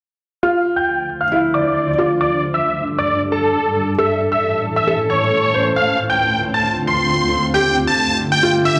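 A huge, euphoric supersaw lead sits up front and carries the melody in this soaring, driving uplifting trance passage at 135 BPM in D minor, its detuned unison sawtooth tone bright and compressed, colored by phaser and delay while a filter sweep moves through it. Alongside it, a clear grand piano traces a second line high in its register, also shaped by a filter sweep, and a felt-muted upright piano adds a soft, boxy counterpart with audible action noise and dub echo. From 1.0 s a shimmering ambient pad joins with slow-attack sustained chords, its ethereal, granular texture thickened by chorus and an octave-up shimmer. An electronic hi-hat, overdriven and re-recorded in a large room, plays along so faintly it is barely audible. The harmony moves through Dm7, Gsus2 and A before returning to Dm7 and Gsus2, all set in a moderate digital room reverb, in a short cut from a longer piece.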